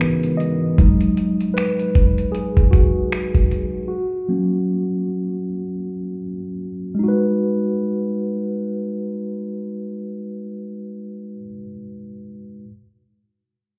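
Late-night and moody, this excerpt of contemporary R&B moves at 77 BPM in 4/4 with a 16th-note swing, set in G# minor and tuned to A4 = 439 Hz. A mellow tine electric piano carries the accompaniment up front, clean and direct, and takes a solo through the first 7.0 seconds. A dusty sampler-style drum kit of finger snaps, hi-hat and a thumpy kick sounds gritty, compressed and tape-toned near the front, dropping out at 3.7 seconds. Beneath it, a smooth, detuned sawtooth analog pad with chorus warbles in the background for under a second, joined by a barely audible electronic downlifter. The mix is heard muffled, as if through a wall, inside a club reverb, while the chords pass from C#m7/G# through B6/F# and F# to G#m7.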